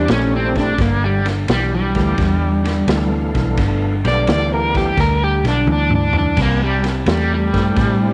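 Soulful and laid-back, this short cut from a longer electric blues shuffle features a bright, crunchy overdriven guitar soloing up front with harmonic tremolo over a gritty, percussive tonewheel organ with slow rotary speaker and chorus vibrato sitting in the background, a slightly broken-up riff guitar through a small old amp with spring reverb, a round, foam-muted fingered bass, and a dark-cymbaled vintage kit with a punchy kick that plays a fill at 5.7 seconds before the harmony settles on Cadd9 at 6.4 seconds.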